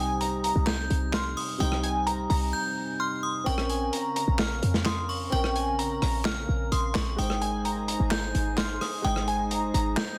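Brooding and hard-hitting, this half-time trap excerpt at 129 BPM in C phrygian sets a crystalline wavetable pluck melody and a ringing, inharmonic FM bell line, both with chorus and tape echo, over a felt-muted upright piano, a punchy short 808-style bass and a gritty, saturated breakbeat kit of snare, rim click, hi-hat and handclaps, with an ethereal, warbling FM pad entering at 3.9 s after a break from 2.5 to 3.5 s, as chords move from Cm to Bbmadd9 to Ab in a dense, heavily limited master.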